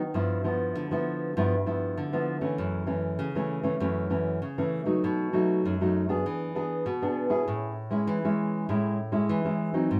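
A solo nylon-string guitar carries this festive, lively samba fragment, its thumb-plucked tone warm and classical on fresh strings, and placed up front in a moderate studio reverb. The harmony moves from G13 through F#m7, B7 and E7 before the piece turns to a new section at 7.5 seconds, settling on Amaj7 as the clip is cut from the longer performance.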